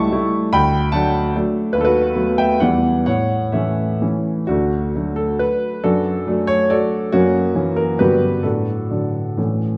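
A dark production sets a smooth, vintage grand piano up front inside a recital hall whose wet reverb lingers for about 1.9 seconds. This is a romantic classical dance in 3/4, a short cut from a longer piece, played by solo piano in D major with dotted rhythms and a rustic, proud character. The tempo moves between 119-157 BPM under a free rubato, and the piano covers a range from C#2 to C#6. The opening phrase leans through A7/C#, D, B7/D# and Em before settling on A, and a second phrase begins at 4.5 seconds on D. From there the harmony passes through D/F#, F#7 and Gmaj7 and comes to rest on D/A at 8.4 seconds, just before the fragment ends at 9.8 seconds.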